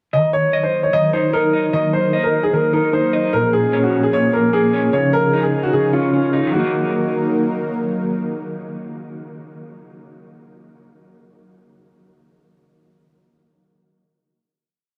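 A boxy concert grand piano, a clean, fingered electric guitar and a detuned sawtooth pad enter together, the piano playing a looping melody up front while the guitar repeats a patterned eighth-note arpeggio like a sampled loop, all in a melancholic yet hard-hitting half-time trap breakdown. The piano carries tape echo and a deep, long-sustaining low end, the guitar shimmers with harmonic tremolo, and the smooth, soft-attack pad holds chords beneath them with chorus. A huge ambient reverb sets a somber space; the piano drops out at 7.7 seconds, leaving guitar and pad to ring on the final chord until 9.8 seconds.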